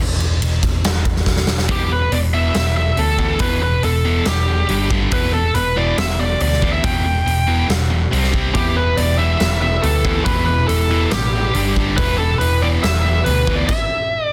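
A dark, bluesy overdriven lead guitar carries the melody up front in this driving, menacing hard rock piece in E minor at 140 BPM, entering at 1.7 seconds after a drum fill alongside a hollow-body overdriven semi-hollow guitar and a bright, scooped high-gain guitar on the riff, over a growly overdriven picked bass and a huge arena drum kit with a punchy kick in a big room, while a double-tracked distorted electric guitar thickens the riff from 8.6 seconds before a stop at 13.7 seconds, set in a dense, heavily limited modern master with light reverb.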